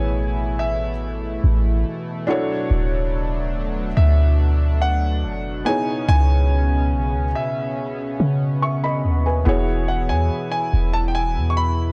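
R&B with a dreamy, smooth mood, cut from a longer piece, where a clear concert grand piano with audible action noise and analog delay carries the high melody over a mellow felt-muted upright piano, a shimmering chorused pulse-width pad holding sustained chords and an up-front, boomy 808-style bass, all moving through Amaj7, Dmaj7, C#m9 and E6 in a small room with a dry, gritty cassette-tape character.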